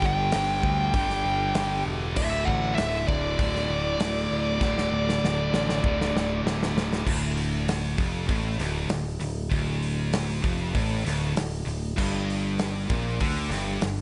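In a straight 4/4 hard rock groove with a swaggering, anthemic mood, this cut from a longer piece rides on an up-front, airy and polished acoustic kit with a punchy kick, a picked bass with a direct, bright tone, a scooped high-gain guitar riff and two sludgy overdriven guitars in the background, one dark and one bright and double-tracked that drops out at 7.0 s and returns at 12.0 s, while a dark, distorted lead guitar with tape echo carries the melody up front until 6.4 s as a drum fill rolls into the second section.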